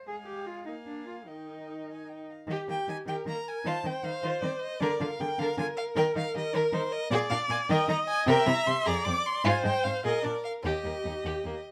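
Classical-period string quartet music, cheerful and spirited, this quick movement in Eb major moves at 102 BPM in a lilting 6/8 with a flexible, rubato feel, heard as a short cut from a longer piece. One bowed violin carries the melody up front, its tone even and smooth with vibrato and a silky top, while a second violin, darker and woody, supplies a supporting line beneath it. The viola fills in the accompaniment with a mellow, expressive voice, using vibrato and sliding portamento between notes. The cello anchors the bass, also placed up front, with a warm tone, soft attack, vibrato and its own expressive slides. The harmony circles through the home key, leaning on Bb7 and touching C7 and Fm before returning to Eb near 10.7 seconds, and a light reverb gives the quartet a gentle sense of space.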